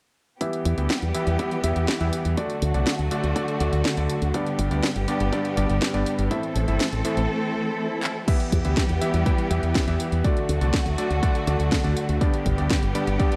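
Strings, piano and drums open together at 0.4 s in this melodramatic, nostalgic italo disco cut from a longer piece in E minor at 122 BPM, where a punchy overdriven electronic kick and a house kit with cracking snare, bright hats, handclaps and crash drive under sustained, vibrato-rich bowed string chords and up-front stabs from a bright, clangy electric grand piano with digital delay. A fingered electric bass with an envelope filter enters at 0.7 s, and a background electronic swell from 7.6 s and a drum fill at 8.0 s lead into the next section over light reverb.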